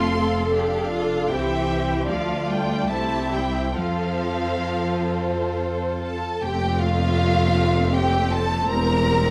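Classical slow romantic movement for string orchestra in a rubato 3/4, yearning and melancholic, in which a warm, distant violin section sings the melody over a second violin line with a soft attack, a smooth, even viola accompaniment, a focused cello section set in the background and an up-front double bass section, each bowed with vibrato under light reverb, in an excerpt cut from a longer piece.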